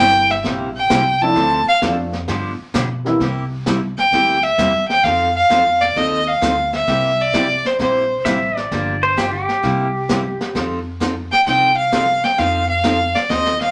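Swinging and down-home, this western swing excerpt moves at 131 BPM in a swung 4/4 in C mixolydian, led by a clear, smooth bowed fiddle up front that carries the melody, takes a featured solo at the start and returns near the close. A dark, mellow upright piano accompanies only through the first 3.2 seconds, while a bright, jumbo-bodied picked acoustic guitar with audible finger squeak, a woody pizzicato upright bass and a brushed jazz kit with a high-tuned snare and boomy kick keep things rolling in a wet studio room. At 8.2 seconds a twangy, compressed pedal steel steps in with volume swells and slide for a second line.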